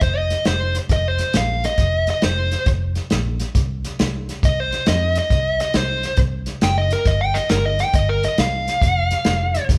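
A live band fills a large studio with moderate reverb in this gritty, laid-back electric blues shuffle at 137 BPM, swung in 4/4 and cut from a longer piece. An up-front, smooth, overdriven lead guitar with a dark, picked tone solos from the start, while a vintage foam-muted fingered bass sounds round and punchy and a dry soul drum kit with a tight kick, medium-tuned snare, hi-hat and rolled-off top sits close. The harmony moves from an F5 chord into chordless stretches, touching an Eb69/G at 7.1 seconds.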